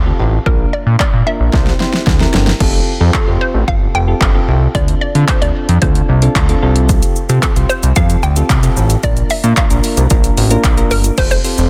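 A hollow, bouncy square-wave pluck carries the melody over a fat, saturated analog bass with sidechain pumping in this upbeat, carefree dance-pop excerpt at 112 BPM in F major. Soft, mellow electric-piano-like synth keys with chorus fill in the harmony, and a punchy, overdriven deep house drum kit of kick, fat snare, claps, hi-hat, shaker and crash arrives at 0.5 seconds, with a fill from 1.5 to 2.6 seconds. The groove then settles on Fadd9, Dm7 and Bb in a dry, dense, heavily limited modern mix.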